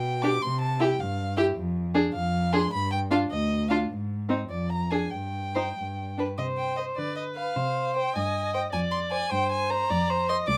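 A bowed violin carries the melody up front, its warm tone shaped by vibrato, portamento and expressive phrasing high in its range. This is a quick classical-period movement for string quartet, graceful and spirited, moving in 6/8 with a flexible, rubato feel. Beneath it a dark cello holds the bass line close and up front, with its own vibrato and expressive portamento. A second violin with a rich tone sits more distant, playing a smooth, even inner line, while the viola fills out the accompaniment up front with a smooth, even sound. Close, detailed microphones and light reverb give an intimate picture, and the music moves into a new section at 6.4 seconds in this passage cut from a longer piece.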